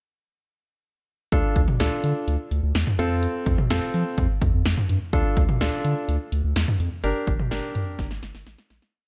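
Melancholic yet driving, this short synth-pop piece runs at 126 BPM in D minor, tuned to A4 = 437 Hz, and moves through Dm, F, Dm and Gm across a single verse. A punchy, tape-warm analog drum machine, re-recorded in a large room, sits up front with syncopated toms, while a deep, round sequenced synth bass anchors the low end and a clear, polished baby grand piano pushes triad chords. The dry mix fades out from 7.0 seconds as the drums play a fill from 8.0 seconds to the end at 8.9 seconds.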